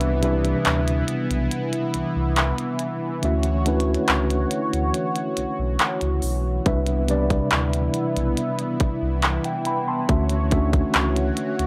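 Tender and dreamy, this excerpt of contemporary R&B sets a mellow tine electric piano, heard through built-in speakers, beside a smooth, detuned sawtooth pad with chorus and sidechain pumping, a deep sine sub bass with octave, and a glitchy electronic drum kit of tight kick, clicky hi-hats and handclaps, re-recorded in a small room, all in a dry, gritty recording with transformer saturation as the chords move between Cmaj9 and Dmaj7.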